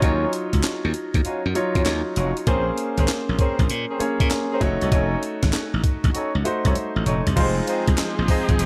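A gritty, compressed sampler-style breakbeat kit with a thumpy kick and high-tuned snare opens this confident, bouncy new jack swing excerpt at 98 BPM with a swung 16th feel, joined from the start by growly, glassy slap bass, an intimate concert grand piano with audible action noise, and mellow jazz-style horn stabs in octaves carrying digital delay over Ebm9, Bbm9 and F7b9b13, until a drum fill at 6.8 seconds leads into a lush, bowed string section holding an Fm7 chord from 7.4 seconds, all in light small-room reverb.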